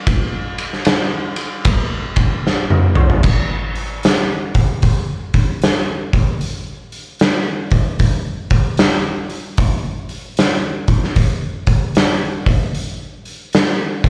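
An oversized, low-tuned acoustic drum kit comes in at 0.1 s, sitting up front with a dark, smooth, saturated tone that gives this rock passage a raunchy, gritty mood. The tempo is a slow 76 BPM in 4/4, with a 65% swing on the eighth notes that lends the groove a loping feel. The kit covers kick, snare, toms, hi-hat, ride and crash, with a punchy kick, a medium-tuned snare and dark cymbals, all set in a bright stone-room ambience. A drum fill from 2.5 to 3.2 s leads into a new section that carries on to the close at 14.1 s. Heard through a club PA with light reverb, the recording has the raw presence of a live gig and is cut from a longer piece.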